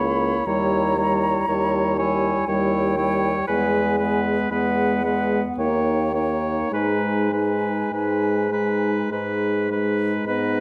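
In a flexible, rubato three-beat metre, this short excerpt from a slow romantic movement for wind quintet unfolds in a lyrical, serene mood. A hollow, pure silver concert flute carries the melody with vibrato and tongued notes, sounding close and intimate, while a warm oboe, up front with light vibrato and a soft attack, sings a second line beneath it. A clear French horn and a distant, roomy clarinet fill in the accompaniment, with the clarinet sitting in the background. A mellow bassoon with a smooth top anchors the bass from up front. The harmony passes through D#7b9, E and D#7 before settling on G#m, and a moderate recital hall reverb surrounds the quintet across its roughly 10.6 seconds.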